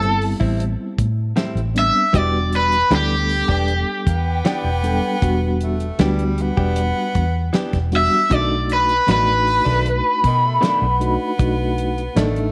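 A cranked stack guitar leads this smoky, mournful soul blues, its bright, overdriven picked melody sitting up front with a slapback echo as it sings between G4 and E5 before dropping out at 11.4 seconds. The tempo is a slow 78 BPM in a straight 4/4, in E minor, moving from Am7 to Em7 and landing on a tense B7#9 at 8.3 seconds. Beneath it, a reedy electric piano plays accompaniment through its built-in speakers with a fast tremolo, while a clean, compressed electric guitar recorded direct adds bright picked stabs. A vintage foam-muted fingered bass gives a round, punchy, amped low end, and a damped 70s drum kit keeps hi-hat, tight kick and fat snare dry and dark with a rolled-off top. At 4.1 seconds an edgy tenor saxophone enters with a jazz-style second line, light vibrato and its own slapback echo. Light reverb and small room ambience hold this short section cut from a longer piece close and intimate.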